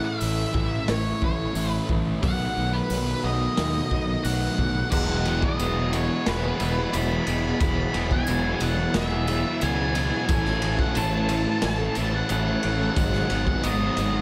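A dark, octave-fuzzed lead guitar carries the melody through tape echo over a hazy, blissful shoegaze and dream pop wall. Beneath it, a thick fuzz riff, an overdriven semi-hollow guitar washed in reverse reverb and a faintly broken-up arpeggio blend with a fuzzed fingered bass and a gritty, boomy garage drum kit pumping in a small room, while a jingly tambourine sits in the background. At 4.9 seconds, a bright, double-tracked distorted guitar riff joins as the chords move from Amaj7 and B7 to Eadd9, in this fragment cut from a longer piece.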